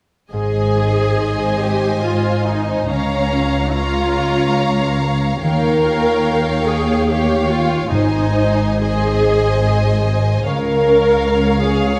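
Classical slow romantic orchestral music in a serene, rubato triple metre, with a bowed violin section singing a lush, vibrato-rich melody above a second violin line, an up-front viola section filling the accompaniment, a very quiet ringing harp spreading arpeggios, smooth cellos and distant double basses holding the bass, and round soft-mallet timpani adding a brief dry touch at 7.9 s, all set in a moderate scoring-stage reverb with a dark, warm production.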